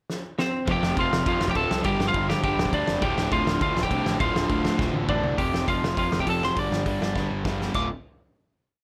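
A dry recording with little reverb carries this short, aggressive and raw punk rock piece in D minor at 204 BPM, opening with a roomy, distant-sounding drum kit with dark cymbals, a fat snare and a tight kick playing a two-step groove with fills, and a slightly broken-up, up-front lead guitar playing a motif-based melody partly doubled in octaves. At 0.7 seconds the band enters: a fuzzy, round, punchy bass drives eighth notes, while a bright, compressed distorted guitar and a dark hollow-body guitar pound quarter-note power chords in the background, and a very quiet, double-tracked crunchy guitar rings out chords until 5.4 seconds. The riff cycles through F, G5 and D minor into a brief outro before everything lands on a final D minor chord at 7.8 seconds.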